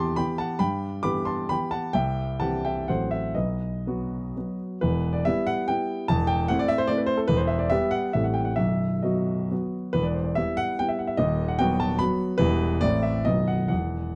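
Dotted rhythms drive this triple-time dance in 3/4, its pulse stretching and tightening with rubato somewhere between 116 and 157 BPM. Cut from a longer romantic classical piece in E minor, it carries a wistful yet capricious mood. A single grand piano plays alone from 0.0 to 14.2 seconds, ranging from a deep B0 up to D6, with an intimate, up-front presence and the audible action noise of its mechanism. The opening phrase moves from E minor through C and a diminished chord to B, and a second phrase begins at 4.8 seconds, circling between E minor, A minor and B before ending on B. Light reverb and a dark, warm production frame the instrument closely, tuned slightly high at A4 = 441 Hz.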